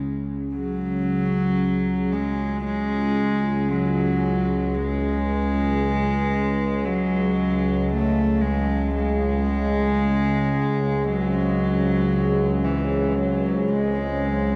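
Steeped in a huge, wet reverb with an 8.2-second tail, this ominous dark ambient drone fragment at 57 BPM in C# harmonic minor rests on an up-front, detuned sawtooth-and-sine drone whose resonant overtones shift under chorus, while a barely audible bronze gamelan-type metallophone rings soft mallet arpeggios until 3.1 seconds, a pure, floating sul tasto cello carries the melody up front through a delay, and from 8.9 seconds a deep, moody analog pad with a sub octave and chorus holds sustained chords in the background.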